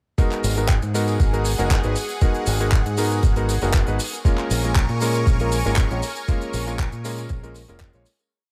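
A compact nu-disco piece at 118 BPM in G# dorian opens at 0.2 s with a gritty, thumpy four-on-the-floor kick up front, a dry, tight funk kit of claps, closed and open hi-hats and tambourine, very quiet maracas, and a vintage electric grand piano playing clangy, short-sustained, dotted-rhythm rootless chords through tape echo. A bright, punchy fingered electric bass with an envelope filter joins with a dotted-rhythm line, soon followed by a lush, thick, detuned sawtooth-and-square pad that swells in slowly under chorus, phaser and sidechain pumping. The sleek, cosmic groove moves from G#m7 to A#m7 at 4.0 s inside a small room reverb before fading out from 5.6 s, all tuned to A4 = 439 Hz.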